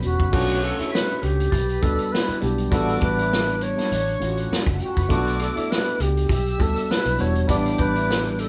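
Over a lightly swung 100 BPM groove in 4/4, this smooth, romantic 1970s-style soul fragment pairs a reedy, bright alto flute melody with a lush, woody violin section line behind it, a worn and slightly out-of-tune tine electric piano, round foam-muted fingered bass, a gritty, punchy vintage drum kit with dark cymbals and a high-tuned snare, smooth horn section stabs entering at 0.3 s, and a very quiet, bell-like celesta that drops out at 4.2 s and returns at 7.8 s, all playing together live in one reverberant room over a Bm7 to A7sus4 progression.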